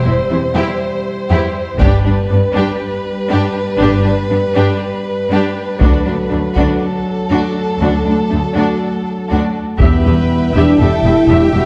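A straight 4/4 pulse at 120 BPM drives this epic, dramatic orchestral film-score cue in E minor, cut from a longer piece and built up over its first 9.8 seconds before arriving on an E minor chord. A close, expressive chamber violin section carries the melody with vibrato, while a focused, lush symphonic violin section spins a second line and a smooth, even viola section supplies accompaniment. Cellos and distant double basses anchor the bass, and a mellow French horn section holds tight sustained chords through the whole passage. Heavy-stick taiko drums, close and dry, strike in short bursts, first at 1.8 seconds and again at 5.8 seconds. At 9.8 seconds the taiko returns alongside an articulate hard-mallet timpani hit on E2 and a very quiet, clear trombone section adding sustained chords. Concert hall reverb with a 2.3-second tail gives the dark production a sense of grand space.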